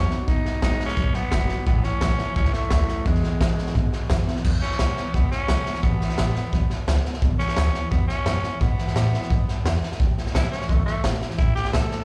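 Rockabilly with a rollicking, rowdy energy, heard as a live club gig through the venue's PA in a short cut from a longer piece, driven by a raw garage drum kit with a boomy kick and dark cymbals up front and a woody, thumpy pizzicato upright bass on gut strings. A twangy, slightly broken-up electric guitar through a small old amp plays a riff with vibrato and slapback echo until 4.4 seconds, while a full-bodied jumbo acoustic guitar, finger squeak audible, is picked in the background. From 4.4 seconds the raspy, growling tenor saxophone, carrying slapback echo and analog delay, takes a solo over an E chord that moves to A.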